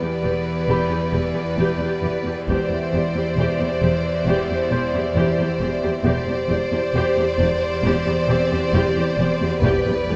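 Opening at once on sustained Em7 strings in 4/4 at 67 BPM, this mysterious, eerie suspense film cue excerpt layers soft-attack sul tasto violin sections holding a D5 melody and a smooth, dark second line over a floating viola, a pure cello on E2 and a rich double bass section from 0.2 s, with a tense, ring-modulated bowed-like drone, beating glassy glass harmonica chords and a very quiet, clear baby grand piano texture in a moderate scoring-stage reverb, while heavy-stick taiko thuds at 2.5 s as the harmony moves to Cadd9/E and returns with hard-mallet timpani at 9.6 s.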